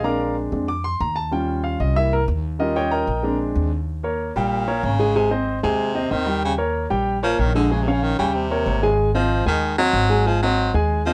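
Light reverb and close, detailed microphones give this short jazz passage an intimate, present sound, cut from a longer piece. It moves at a brisk 188 BPM in a straight 4/4 in Eb mixolydian, with a sunny, danceable mood. A warm concert grand piano opens with a solo over a shifting run of dominant chords, its polished tone carrying deep bass, long sustain and a touch of audible action noise. Underneath, a plucked upright bass on gut strings supplies a woody, dark and thumpy foundation that sits up front. At 4.4 seconds a clear baritone saxophone enters to take the solo, its jazz-style vibrato placed up front over the piano's accompaniment. The harmony passes through Eb7, Ab and Bbm7 before settling on Ab7 near the close.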